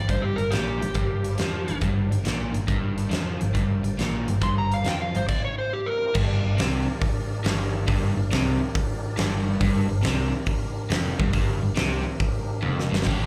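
A slide guitar, a crunchy riff guitar, a tonewheel organ and a bass all start together on a G minor chord, with a huge arena drum kit joining a split second later. This smoky, heavy blues rock and southern rock piece moves at 139 BPM in 4/4 with a swung eighth-note feel. Up front, the dark, overdriven slide guitar carries the melody in two brief phrases across roughly the first 6 seconds, coloured by slapback and tape echo. Beneath it, a double-tracked, bright, picked guitar riff and a round, punchy, foam-muted fingered bass drive the groove. The drums add a fat snare, a boomy kick, crash, hi-hat and toms, while the warm, lightly overdriven organ holds sustained chords in the background with key click, chorus vibrato and a slow rotary speaker. A drum fill arrives at 12.6 seconds, the organ stops at 13.0 seconds, and the whole fragment sounds like a live club gig heard through the venue's PA, with small-room ambience and club reverb.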